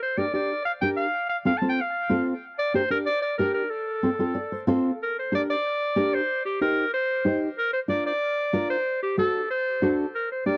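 Latin instrumental in G minor at 187 BPM, passionate and danceable, cut from a longer piece. A bright, punchy clarinet carries the melody from the first moment, playing up front in a forceful jazz style with light vibrato and a vintage tape echo. A dark, thumb-plucked nylon-string guitar joins at 0.2 seconds with classical accompaniment, sitting equally forward in the mix. The harmony moves between Gm and F before the second section at 5.0 seconds, where it travels through Cm and Bb to a closing D7. The guitar steps out with a fill from 4.0 seconds, just before that change. The sound is dry and close, in the manner of a 1970s studio, with only light reverb.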